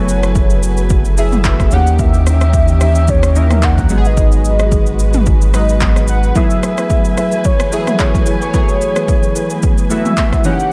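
Punchy, overdriven deep house drums with handclaps, kick, rim click, shaker and toms sit up front beside a deep, full sine-and-triangle sub bass with octave that drops out at 6.3 seconds, while a velvety sawtooth unison synth lead with chorus, vibrato and digital delay carries the melody over round, detuned analog keys with phaser and filter sweep, veiled, lush con sordino strings pumping under sidechain, and, from 6.4 seconds, dry, woody marimba stabs with delay tucked in the background, all shaping a soulful, hypnotic amapiano groove at 110 BPM in F# dorian with swung 16ths and a dark, close production.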